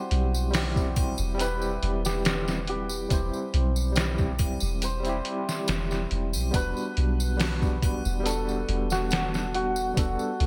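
A bright 1980s-style digital sheen and a lush hall reverb frame this hypnotic, smoky trip hop excerpt at 70 BPM, where a shimmering, hammered santur with tape echo carries the melody over a barky, overdriven tine electric piano with tremolo, a deep, round 808-style bass, a muffled, pitched-down sampler drum kit with a thumpy kick and gated reverb, and close tambourine and triangle, moving from C/E to Em7 at 6.5 seconds.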